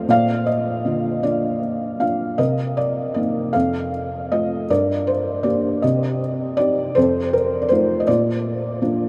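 A felt-muted upright piano, soft, intimate and up front with its action noise audible, plays a wistful, dark classical solo in C dorian at a rubato 52 BPM in 6/8, ranging from F2 to F5 over chords moving from Bb through Cm7, F, Gm, Cm and F7 back to Bb, tuned to A4 = 438 Hz and bathed in a huge, echoing reverb across this 9.1-second excerpt from a longer piece.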